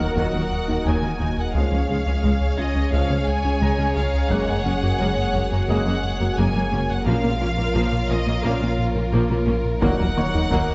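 Lush, vibrato-rich violins carry the melody over a second violin line and background violas in this tense, futuristic hybrid orchestral and electronic film-score cue at 87 BPM in Eb minor, where a round analog bass riff, a soft dub sub bass, a moody detuned pad with chorus and ringing harp-like synth pluck arpeggios with chorus and delay blend with very quiet cellos, distant double basses, mellow French horns, vintage-toned trombones and a faint, clear grand piano, while a barely audible sub drop marks the opening impact and hard-stick taiko hits arrive at 4.3 s and 9.8 s, all set in a moderate scoring-stage reverb.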